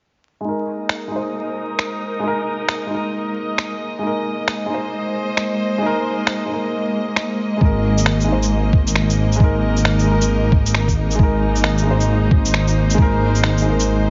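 This nocturnal, rainy future garage excerpt at 134 BPM, swung on the 16ths, opens at 0.4 s on an Absus2 chord from a soft, felt-muted upright piano with audible action noise, joined by a dark, veiled con sordino string section, both pumping against the sidechain and moving through filter sweeps, the piano trailing tape echo. Compressed, pitched-down finger snaps and shaker with a muffled, tape-warm character sit up front, while a glassy harmonics texture drifts in the background with chorus and its own reverb. At 7.6 s a thumpy, muffled kick and a deep, rumbling detuned saw bass with a saturated, beating edge arrive, all set in light digital ambience with vinyl crackle and a top end capped at 7.5 kHz.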